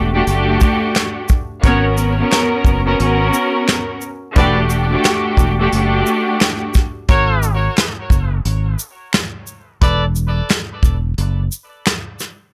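A swung boom-bap hip-hop groove at 88 BPM in 4/4, with soft brushes, a punchy kick, a medium-tuned snare, hi-hat and shaker from a drum kit placed up front, sets a dark, moody tone in this short excerpt from a longer piece. A round, fingered electric bass sits low underneath, while a rich, bowed string section with smooth vibrato carries the accompaniment until 6.7 seconds, filtered at both ends of its range. A clear trumpet section adds stabs with light vibrato and tape echo from 1.6 seconds, and a very quiet finger snap with a short, close room sound ticks along in the background. The harmony moves through minor eleventh chords, shifting from Em11 to G#m11 and back before settling on suspended chords, and a break begins at 7.1 seconds once the strings have dropped out. Light reverb gives the mix a gentle sense of space.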